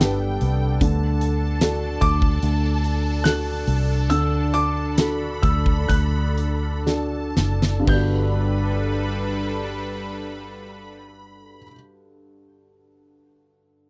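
In a straight 4/4 that slows from around 75 toward 58 BPM, this hopeful, heartfelt pop ballad in G major, cut from a longer piece, sets a present, polished baby grand melody over a smooth bowed violin section line, a soft felt-muted upright piano with audible action noise, an airy, detuned, chorused sawtooth pad, a dark, round, foam-muted electric bass, and a punchy arena kit with a fat snare that plays a fill from 6.9 s and drops out at 8.1 s, all in a dry, close 1970s-style studio sound, with the upright piano lingering alone until 13.9 s.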